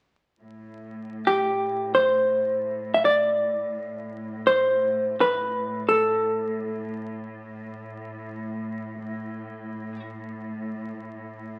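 Solemn and mournful, this short cut from a longer Caucasian folk lament in A minor unfolds in free time as a distant bowed string section holds a low A drone with rich vibrato from 0.4 seconds while an up-front, dark, clean electric hollow-body jazz guitar picks a compressed melody between G4 and E5 from 1.3 to 10.0 seconds, all bathed in a large studio reverb and the crackle of a very old 78 rpm record.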